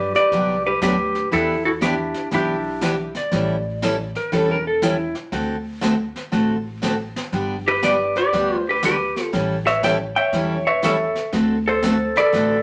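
Cheerful and swinging, this short country and western swing excerpt moves at 120 BPM in 4/4 with a swung eighth-note feel in G major, its chords running from Gmaj7 and Em7 through A7 and D7. A dark, clean hollow-body jazz guitar carries the melody up front, sounding from the start until 3.1 seconds and returning at 7.7 seconds, while a distant, raspy clarinet with subtone and scooped notes growls a second line alongside it over the same spans. In the gap between, a clean lap steel guitar played with fingerpicks and slide takes the second line from 3.2 to 5.1 seconds, using volume swells. Underneath, a bright, full-bodied dreadnought acoustic guitar picks the accompaniment, an upright bass plucks a woody, thumpy low line throughout, and a brushed drum kit with a boomy kick and hi-hat keeps time quietly in the background. The studio reverb is fairly short, giving the whole band a roomy but close feel.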